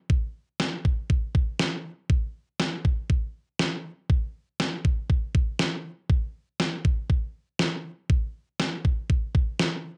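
Nocturnal and cool, this pop fragment cut from a longer piece moves at 120 BPM in a straight 4/4, carried entirely by a clean 12-bit digital drum machine playing kick and snare from 0.1 to 9.7 seconds. The sampler-style electronic kit sits up front, pairing a thumpy kick with a fat snare, and carries the character of cassette tape. Captured as a home recording on cassette, it is heard through a moderate small-room reverb.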